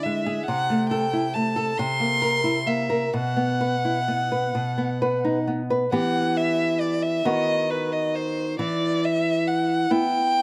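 Elegiac and yearning, this excerpt from a romantic duo in E minor moves at a slow 44 BPM in 6/8, with uneven beats and a free, rubato feel, tuned to A4 = 443 Hz. A single bowed violin carries the melody up front with a rich, smooth vibrato and a touch of slapback echo, while a fingerpicked nylon-string guitar gives small, warm accompaniment just as close. Light reverb and an open-air recording frame the sound as the harmony leans through C7 and B before settling onto Em at 5.9 seconds, where the second section begins.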